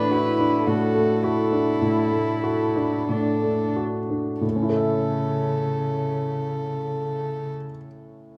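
A tender, lyrical excerpt from a slow, romantic classical piano trio movement in A major, in 4/4 around 43-55 BPM with a rubato feel and a slowdown through the opening 4.4 seconds, begins with a pure, floating violin melody played sul tasto and a close, intimate cello second line with light vibrato over clear, polished baby grand piano accompaniment, moving from a D/A chord to A at 4.4 seconds before the piano sustains on alone from 7.5 seconds in a dark, warm production with light reverb.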